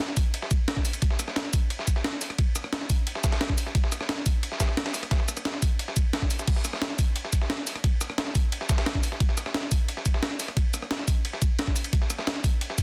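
An overdriven, knocking electronic kick sits up front from 0.2 s, driving a soulful, rolling drum and bass groove at 176 BPM in a straight 4/4. Alongside it, a compressed, pitched-up breakbeat kit with a tape-warm, small-room character supplies crash, hi-hat, rim click, shaker and a medium-tuned snare. A quieter, gritty soul-style kit adds ride and snare, both thinned by high-pass filtering. The sound is dry and dense, with a heavily limited modern master, and this excerpt is cut from a longer piece.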